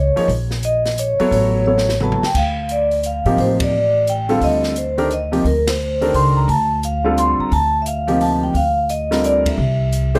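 A moderate studio ambience frames this cool, spiritual modal jazz excerpt in D phrygian, swinging in 3/4 at 174 BPM. A ringing, mellow vibraphone played with soft mallets carries the melody up front with slow motor vibrato and plate reverb, over a woody pizzicato upright bass and a present grand piano that joins at 0.2 seconds with the airy drum kit, whose dark cymbals and boomy kick sit further back. A drum fill from 1.7 to 2.4 seconds leads into a passage alternating Dm7 and Ebadd9/D, punctuated by band accents.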